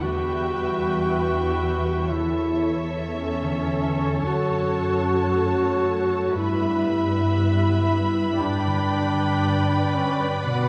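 Cinematic, emotional film score for orchestra, longing and sorrowful in a slow rubato 4/4, where a mellow, up-front duduk carries the folk-style melody with vibrato and scooped notes over a lush violin section's high second line, a focused viola section's accompaniment, rich cello-section bass and ringing harp arpeggios in the background, all set back in a wet scoring-stage reverb in this fragment of a longer piece.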